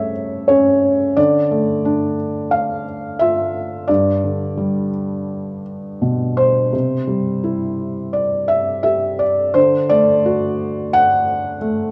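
Classical solo piano in a brooding, lyrical mood, this fragment of a longer piece features a felt-muted upright piano, mellow, intimate and up front, moving freely in rubato through a progression from A7/C# to Dm, G, C and D, set in a moderate concert-hall reverb and colored by the warbling pitch drift of worn old cassette tape.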